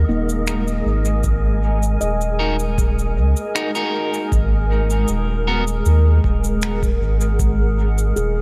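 Meditative and deep, this 78 BPM ambient dub excerpt rests on a round, up-front sub bass and a blurred, evolving granular pad over D#m moving to G#7sus2 at 4.3 s, with ringing handpan arpeggios and airy cabasa and finger snaps trailing dub echo, an overdriven electronic kick set in the background, twangy, slightly broken-up electric guitar stabs entering at 2.4 s, and a dark, breathy wind-like texture that ends at 4.3 s, all in a small room.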